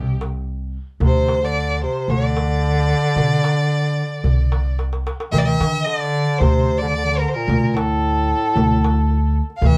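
Hypnotic and longing, this Arabic maqam ensemble piece in D maqam bayati moves at a straight 111 BPM in 4/4, captured as a band playing live in one room with moderate studio reverb. A rich, focused bowed violin carries the melody up front with vibrato, though with a slightly distant quality, while a clear, vintage-toned bass clarinet adds a jazz-style second line. Beneath them, a woody, thumpy pizzicato upright bass on gut strings sits up front, and a crisp, compressed metal-shell darbuka played with hard hands enters at 0.2 seconds and drives a fill from 4.8 to 5.3 seconds into the next section of this excerpt.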